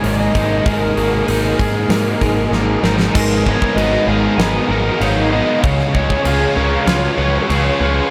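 This blissful, dreamy shoegaze and dream pop excerpt moves at 97 BPM in a straight 4/4, its rhythm guitars, bass and drums all arriving together over an Absus2 chord. A huge arena drum kit with a pumping hall sound, fat snare, punchy kick and bright cymbals drives the music beneath a fuzz-soaked picked bass that sits up front. Three distorted rhythm guitars play riffs in the background: two biting parts, one warm and one double-tracked, with the higher one trailing a reverse reverb, plus a dark third part coated in lush chorus. A very quiet twangy, compressed twelve-string electric guitar adds clean arpeggios, while a faint vintage string machine holds soft sawtooth cello chords with phaser and ensemble chorus. From 0.1 seconds a lo-fi lead guitar through a small cranked amp sings a warm melody with tape echo. A drum fill at 2.5 seconds ushers in a new section at 3.2 seconds, where the harmony moves to Abmadd9 and then settles on Db, all within light small-room ambience.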